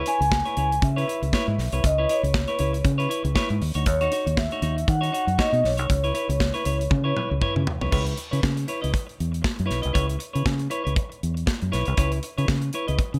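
A dry, close recording frames this driving, danceable disco cut from a longer piece, moving at 118 BPM in C# minor with a light 16th-note swing over C#m7 and Badd9 chords. A polished studio kit with a punchy kick and medium-tuned snare sits up front beside a foam-muted fingered bass, while a clean, twangy picked electric guitar with spring reverb plays accompaniment. A mellow vibraphone with soft mallets and slow motor vibrato carries the melody until 7.4 seconds, and a drum fill from 6.9 seconds leads into a new section at 7.9 seconds.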